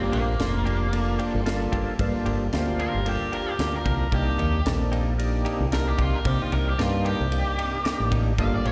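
Straight-eighth soul blues with a soulful, smoky mood, heard as a live gig through the venue's PA with recital hall reverb, in a brief cut from a longer piece that moves from Gm7 to Cm7 at 4.1 seconds. A raw, bright garage guitar with overdrive and slapback echo takes the solo throughout, over a gritty, thick tonewheel organ with slow rotary speaker, chorus vibrato and percussive third harmonic percussion. A round, up-front fingered bass with an envelope filter plays alongside a tight funk kit of kick, ride and high-tuned snare, while a twangy, compressed clean electric guitar adds stabs in the background from 0.1 seconds and a distant, lush string section holds very quiet bowed chords with vibrato and portamento.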